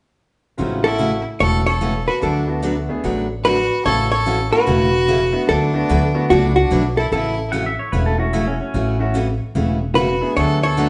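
A live band shares one stone room with a wet reverb and a dark top end in this playful, down-home country excerpt, swinging in 4/4 at 147 BPM in A major over A6 and D6 chords. A growly, thumpy upright bass sits up front under a brilliant upright piano and a full-bodied dreadnought acoustic guitar with finger squeak, while a clean, compressed hollow-body electric guitar carries the melody beside a biting, intense fiddle with light vibrato. Both drop out at 7.5 seconds for a twangy pedal steel with volume swells, then return at 10.0 seconds.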